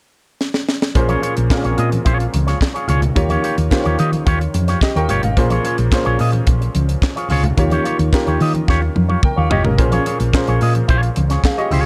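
Disco at 109 BPM in Bb dorian, glamorous and sultry, this short excerpt opens with a drum fill at 0.4 seconds on a tight, dry, up-front funk kit with a high-tuned snare, handclaps, hi-hat and toms, before a clear but worn grand piano with short sustain, a bright, twangy electric guitar through an envelope filter, a round, punchy hollow-body bass, and very quiet, distant congas join over alternating Bbm7 and Eb9 chords, with another fill at 8.7 seconds, all set in a small room within a dark production.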